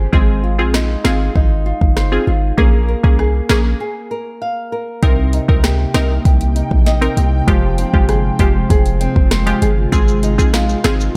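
This is a tough, sultry dancehall cut from a longer piece, set in a dark, warm digital ambience. A fingerpicked flamenco guitar plays acoustic arpeggios throughout, finger squeaks audible, over a deep, boomy 808-style bass with a sine body, a noise layer and a fast, decaying attack sitting up front. An electronic afro-pop drum kit, also up front, drives the groove with a deep kick, sharp snare, rim click and metallic hats, while a crisp, detuned wavetable chord stab with a filter pluck adds bright accompaniment over chords moving from Ab6 through Bbm7 and Cm7 to Fmadd9. After a break at 3.8 seconds, an ethereal, airy pad enters at 5.8 seconds with slow-attack sustained chords, ensemble chorus, built-in reverb and sidechain pumping. Close, acoustic maracas join at 9.9 seconds for the final moments.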